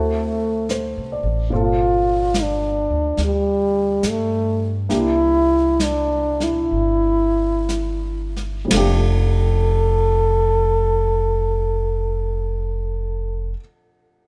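Swung eighths at 58-73 BPM in 4/4 carry this tender, romantic jazz ballad excerpt in F major, which slows through its middle stretch as a breathy, mellow trombone with light vibrato and scooped notes sings the up-front solo melody over an intimate baby grand piano with audible action noise, a woody, growly pizzicato upright bass, and a brushed kit with dark cymbals that plays from 0.7 to 9.5 seconds, set in light reverb.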